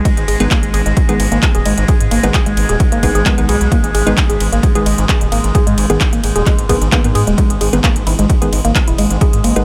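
Set in a digital ambience, this short excerpt of driving peak-time techno at 131 BPM in G# minor feels hypnotic and driving, holding on a G# minor chord throughout. A punchy, layered electronic kick joins a kit of handclaps, smooth hi-hats and ride cymbal, while a gritty, saturated synth bass with a nasal, resonant edge pumps against the beat alongside a sustained drone of shifting overtones coloured by chorus and reverb. Over this, a woody, mellow plucked riff with chorus and tape echo repeats, and crisp, detuned wavetable chord stabs with their own tape echo sit in the background from 0.4 seconds.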